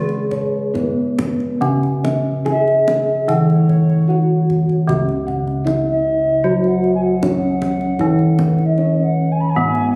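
Captured on a phone in a reverberant recital hall, this short cut from a longer Javanese gamelan piece has a wet, roomy sheen and a shimmering, serene mood in an unhurried 4/4. A bronze metallophone carries the melody with padded mallets, its soft, ringing tone shimmering with the beating of paired tuning and carrying a boxy small-room colour. A second metallophone plays the lower accompaniment struck with a horn mallet, sounding bright and up front. Bossed gongs spin arpeggios above with a round, close-miked, dry fullness, while another set of bossed gongs holds the bass with padded beaters in a mellow tone. The kendang adds deep, acoustic drumming from 0.1 s, and from 2.5 s an alto ocarina joins with a distant, airy second line, its clay tone hollow and straight as the music moves from its opening section into a new one at 4.9 s.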